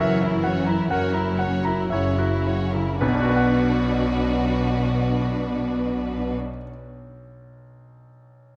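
Brooding and passionate, this short classical fragment, cut from a longer piece, moves in a rubato 4/4 that slows over its opening 3.0 seconds as an F#7 chord resolves to B minor. A bright, brilliant concert grand piano carries the melody up front, its polished tone spanning deep bass to high treble with short sustain, and it rings on alone until 8.6 seconds. Beneath it, a lush bowed orchestra plays until about 6.3 seconds: the violins split between a smooth, even melody and a softer, more distant second line, while the expressive violas add accompaniment in the background. Mellow French horns hold sustained chords with a soft attack, and rich cellos join focused double basses on the bass line, all strings colored by vibrato. Light reverb gives the ensemble a sense of space around the prominent piano.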